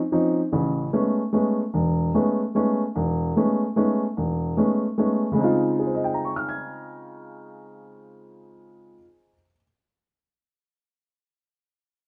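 A dark, woody upright piano plays alone from 0.1 to 9.6 seconds in this short jazz excerpt, sitting boxy and up front in a moderate studio reverb as it swings in 3/4 at 148 BPM through Db lydian, spanning E1 to Ab6 and moving from Dbmaj9 to Amaj9 before returning to Dbmaj9 at 5.4 seconds, for an open, spiritual mood.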